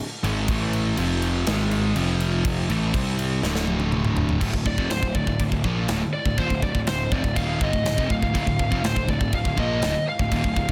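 A straight 4/4 pulse at 122 BPM opens in half time, with a tight, up-front drum kit of tight kick, snare, toms and bright crash cymbals driving a heavy, dark D phrygian metal riff, then breaking into a fill at 3.4 seconds. Two picked rhythm guitars sit in the background, one high-gain and bright, the other sludgy and overdriven, over a growly fuzz bass, moving through power chords from A5 to F5 and G#5 before landing on D minor. From 4.7 seconds a dark, high-gain lead guitar solos with digital delay in a modern, dense, heavily limited mix with studio reverb, in this cut from a longer piece.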